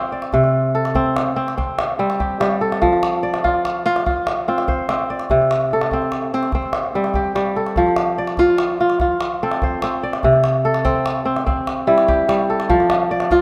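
A ringing, crisp kora opens the recording with fingerpicked arpeggios, sitting up front with a slapback echo, joined at 0.2 s by a deep, distant calabash that sounds as if it is in a large room. This joyful West African traditional piece moves at 97 BPM in a straight 12/8 in F major, its harmony alternating between F and C, with a new section arriving at 7.8 s. A lush hall reverb surrounds this rough, home-demo-style fragment of a longer piece.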